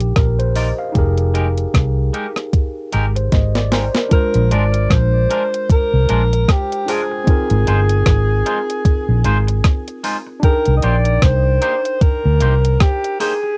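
Lovers rock reggae with a longing, bittersweet mood, cut from a longer piece and rendered as a lo-fi home cassette recording with light reverb, built on a minor-seventh and eleventh chord progression. A crisp 8-bit drum machine with a thumpy kick and overdriven, up-front tape grit sits alongside a dark, foam-muted fingered bass, while a worn, slightly out-of-tune tine electric piano, lightly overdriven through a combo amp, and a twangy clean guitar playing stabs fill in the harmony. After a drum fill from 3.3 to 4.1 seconds, a breathy alto saxophone enters with jazz-style subtone and vibrato, sounding distant and roomy with tape echo and cassette colouring.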